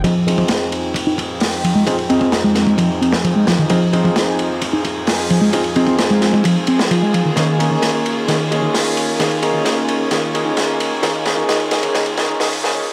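A swaggering, funky breakbeat build-up opens with everything at once: crunchy, saturated drums sitting up front with dark cymbals and a tight kick, a growly picked electric bass riff, and deep-bodied grand piano stabs, the bass and piano both trailed by analog delay. Behind them, a soft, floating string section holds bowed chords coloured by vintage 12-bit sampler grit and sidechain pumping, while filter sweeps run across the bass, piano and strings as the harmony moves from Fm7 to Eb7sus4. A drum fill arrives at 7.4 seconds, all set in a dry, gritty small-room sound with vinyl crackle.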